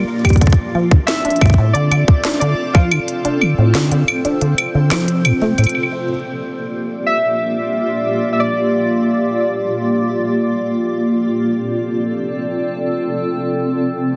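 Eerie and intricate, this IDM fragment opens with a rubbery, resonant acid bass arpeggio, joined by a tight electronic kick and an up-front electronic kit of woody snare, crisp hi-hat, claves and crash, all filtered low. Warbling, detuned lo-fi synth keys carry a nostalgic melody with chorus and delay over a blurred, evolving granular pad that holds Dm7 and Gm7 chords. The kick stops at 2.9 seconds and the bass at 5.7 seconds, and after the keys end at 10.7 seconds the cloudy pad rings on alone in a dense, heavily limited mix with light digital ambience.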